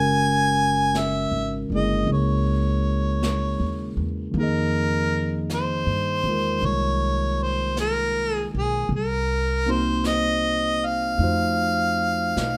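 An intimate, melancholic jazz ballad moves at a slow, swung crawl in this excerpt from a longer piece. A harmonica carries the melody up front, its tone warm and smooth on top, with light vibrato and scooped notes in a jazz style. Beneath it, a bright, barky tine electric piano plays clean, direct accompaniment, while a pizzicato upright bass with steel strings adds a woody, dark, thumpy low end. A brushed drum kit joins at 0.9 seconds, sitting distant and roomy with its medium-tuned snare and hi-hat. The harmony drifts from Gb9 to Fm7, then darkens through Cm7b5 to F7b9 near the close, all under a light reverb.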